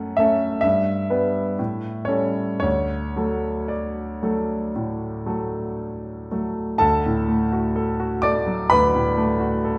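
A concert grand piano sits up front in a moderately large studio room, its reverb lingering for about 1.4 seconds around each note. This brief classical fragment, cut from a longer romantic nocturne, has a nostalgic, dreamy mood, with the solo piano moving in a flexible rubato over a 4/4 pulse. The instrument's tone is clear and smooth, with a deep bass and a slightly vintage character, and its range stretches from the low register up to the high treble. The harmony drifts from F#m through Em/G and A7 before settling on D by 2.6 seconds. Around 6.8 seconds the music turns to a new passage, which carries on until the fragment ends at 9.8 seconds.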